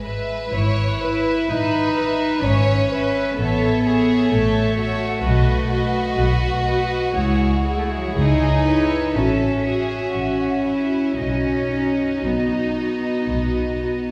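Heard from further back in a wet scoring-stage reverb, this tender, serene slow romantic movement for symphony orchestra in E major drifts in 4/4 at 56-65 BPM with rubato, a dark, sul tasto first violin section carrying a pure, floating melody over warm second violins with light vibrato and rich violas, while up-front cellos and double basses lay a soft-attacked, shadowy bass, all five sections playing throughout this 14.1 s fragment of a longer piece as the harmony moves from E/G# through A, B, C#m and F#m7/A to land on B.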